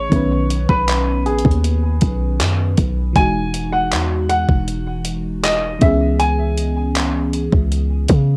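A dreamy, romantic contemporary R&B fragment opens on an intimate baby grand piano melody with audible action noise, tape echo and a cassette-tape coloring, over a lush, warbling FM electric piano and soft pad with chorus, a deep, boomy 808-style bass up front, and a thumpy, overdriven 12-bit drum machine of kick, hi-hat and handclaps entering at 0.1 s, as the chords move from Badd9 to Emaj9 to C#m7 in a dry home-cassette sound.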